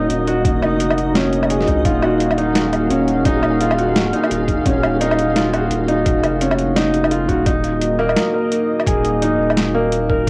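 A tense, spacious half-time drum and bass cut opens with a felt-muted upright piano playing soft arpeggios through analog delay, a dark, detuned analog pad with chorus and sidechain pumping, a saturated sine sub bass, and a very quiet flickering grainy texture that stops at 7.5 seconds, while a gritty, overdriven boom bap sampler-style kit of hi-hat, snare and woodblock enters at 0.1 seconds and a thumpy electronic kick at 0.4 seconds, both kits carrying cassette tape color, all over a faint mains hum.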